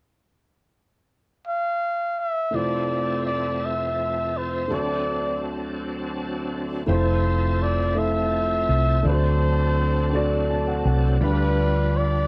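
A slow, soulful and uplifting gospel excerpt in 6/8, where a breathy, scooped solo trumpet carries the melody from 1.5 seconds before a woody upright piano with audible action noise and a bright, shouting tonewheel organ through a fast rotary speaker enter at 2.5 seconds, the piano adding a fill near the end while a round, amped hollow-body electric bass anchors the low end from 6.9 seconds in a dark production with light reverb.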